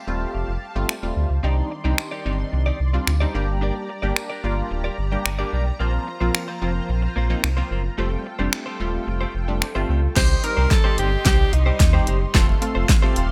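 A bittersweet, driving dance-pop excerpt in a straight four, built on a soft, smooth supersaw holding sustained chords and a punchy, funky polysynth comp with a detuned filter pluck, joined by a deep, full sine sub bass with octave that sits up front, all three pumping with sidechain. A punchy deep house drum kit with fat snare, finger snaps and hi-hat enters at 0.9 seconds, and a clean, direct-recorded electric guitar riff with subtle chorus follows at 1.4 seconds, over a bright 1980s-style digital sheen with light reverb. At 10.2 seconds a drum fill drives a build-up as a bright alto saxophone with vibrato and delay sings a short pop-style solo line over chords moving from Cm to F.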